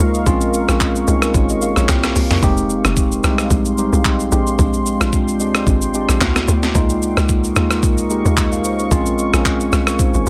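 A swung amapiano groove at 111 BPM in 4/4 rides on a gritty, compressed breakbeat kit entering at 0.1 s, its thumpy kick, high-tuned snare, rim clicks, handclaps, toms, hi-hat and shaker sitting up front beside a tight, punchy log drum bass with a fast attack and a noisy edge. A mellow, clean tine electric piano, also up front, carries the accompaniment through chords such as Bbm7, Fm7, Bb13 and Db69. Beneath it, a deep, moody sawtooth pad with a sub octave, chorus, its own reverb and sidechain pumping holds long chords, giving this soulful clip from a longer piece a dry, close sound overall.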